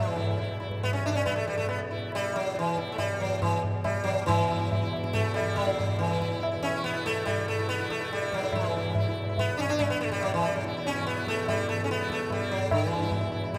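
Meditative and introspective, this short excerpt of Hindustani classical music in raga Kafi on E moves in a straight 5/4 at 141 BPM, gradually speeding up throughout its 13.6 seconds. A bright, buzzing sitar carries the melody up front, its sympathetic strings shimmering, while a reedy, breathing pedal harmonium holds a drone in the background and a low-tuned tabla with a short ring joins at 0.4 seconds. The sound sits in a church or concert hall with a long, wet cathedral reverb, though the tabla stays close and dry.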